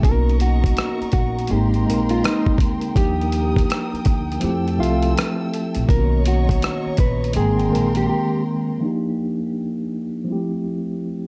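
Gritty, up-front sampler-style drums with a thumpy kick, hi-hat and rim click anchor this nostalgic, cosy lo-fi hip hop excerpt at 82 BPM in Eb major with a swung feel, alongside a woody pizzicato upright bass, a dark, clean, fingered electric guitar melody, soft-attack bowed strings with vibrato holding smooth chords, and a mellow tine electric piano with cassette-tape colour, all set in a moderate studio reverb; the band breaks at 8.1 seconds, and from 8.8 seconds the electric piano carries on alone under a filter sweep until 11.3 seconds.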